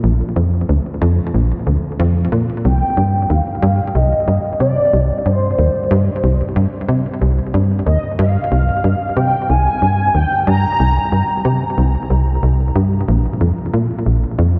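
Cosmic and mysterious, this fragment of a longer piece of ambient, sequencer-driven space music moves at 92 BPM in C minor, built on a tight, punchy sequencer bass riff of sawtooth and square waves with ring modulation, a plucky filter and a fast, decaying attack, placed up front with subtle chorus and delay. At 2.6 seconds a smooth, dark portamento lead of sawtooth and triangle tones enters with a soft attack, sustained notes, vibrato, ensemble chorus and delay, singing its high melody until 11.7 seconds over harmony that moves from Bb to C7(no3) and then Bb5. A cathedral reverb with a 6.1-second tail and a cassette-tape character wraps the music in a vast, echoing space.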